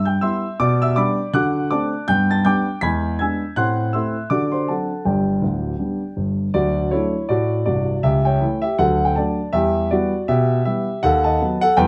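Swinging and exuberant, this short stride piano excerpt cut from a longer piece moves at a brisk 161 BPM in 4/4 with a light swing on the eighth notes. A grand piano plays solo throughout, its tone natural and up front, ranging from deep bass at C1 up to B6. The opening section sits in G major, running through changes such as Cmaj7, D7 and E7 before settling on G. At 6.5 seconds the music shifts to D major for a second section, passing through A7/C# and Em and ending on B7/D#. A moderate club reverb and a dark, warm production give the instrument a cozy club ambience.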